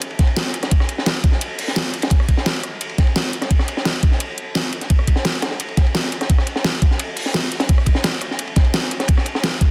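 Soulful and melancholic, this short drum and bass cut runs in a straight 4/4 and is built entirely from layered drums. An overdriven pop kit with a deep snare, hi-hat and rim click plays from the start, and an overdriven electronic kick with a knocking punch sits up front alongside it from 0.2 seconds. Beneath them, a filtered acoustic breakbeat kit adds dark, gritty hats, ride cymbal and a high-tuned snare, all within light reverb and a dense, heavily limited master.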